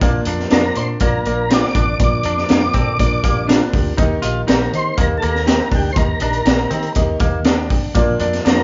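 Uptempo 1960s-style soul at 121 BPM in Bb major, uplifting and danceable, moving from Bb to Eb and back, with crunchy, up-front breakbeat drums with a punchy kick and high-tuned snare, a round, foam-muted fingered bass, a woody, slightly detuned upright piano that adds a fill at 3.0 seconds, and a clean, compressed semi-hollow guitar riff from the start, joined at 0.5 seconds by a smooth tonewheel organ melody with key click, chorus vibrato and slow rotary speaker, a very quiet, mellow soft-mallet vibraphone adding a second line, and twangy, slightly broken-up guitar stabs set in the background, all in a live-room sound with moderate studio reverb and a dark, rolled-off top.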